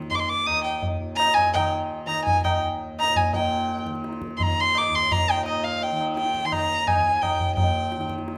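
Serene and radiant, this short cut from a longer Hindustani classical performance moves in a three-beat metre with a straight feel, gradually speeding up across its 8.4 seconds. A softly plucked tanpura sustains a low, buzzing drone with a shimmering, acoustic glow, sitting quietly beneath the other parts. High-tuned tabla with a short ring provides the percussion, its live-room sound adding presence to the rhythmic pulse. Up front, a single bowed violin carries the melody from 0.1 seconds, its dark, woody and boxy tone coloured by light vibrato as it sings in a high register in raga bilaval. The performance shifts into a new section at 3.3 seconds, and the whole ensemble sits within a moderate recital hall reverb that lends the playing an open, resonant space.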